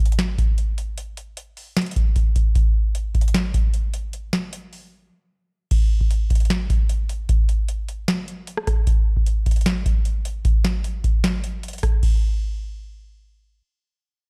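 A dry, gritty hardware sound frames this hard-hitting, melancholic hip hop excerpt in a half-time feel, where a booming, up-front analog drum machine with a deep kick, tonal snare, metallic hi-hats, rim clicks and crash cymbal plays from 0.1 to 12.1 seconds, with a short break from 4.9 to 5.7 seconds before the next section.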